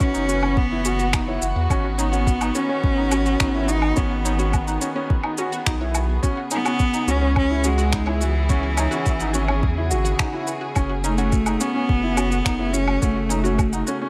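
Intimate and hypnotic, this piano and strings electronica excerpt moves at a steady, straight pulse in 4/4, cut from a longer piece. A rich, close solo cello carries the melody up front with smooth, even vibrato, while a dark chamber string section holds sustained bowed chords beneath it. A clear grand piano repeats a short riff touched with delay, and an analog pluck, nasal and detuned with chorus, phaser, delay and sidechain pumping, spins arpeggios in the background. The rhythm rests on a soft, overdriven electronic kick and an overdriven blend of shaker, woodblock and finger snaps, joined by a round, deep analog bass that pumps with the sidechain. The harmony shifts from Bsus4 to G#m7 and later to F#madd9, just after a faint electronic swell between 9.9 and 10.8 seconds, all set in a light reverb.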